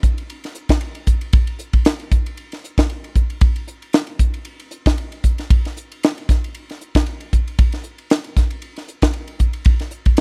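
Jazz drums carry this slick, nocturnal fragment cut from a longer piece, a crisp fusion kit playing alone from 0.0 to 10.2 seconds. The groove sits in 4/4 with a light swing on the sixteenths, giving the pulse a relaxed lilt. Hi-hat, ride cymbal, a high-tuned snare and a punchy kick make up the kit, which sounds acoustic, airy and polished, placed up front in a studio room. The recording is dry and close in a 1970s studio manner, with little reverb, so each stroke comes through clean and immediate.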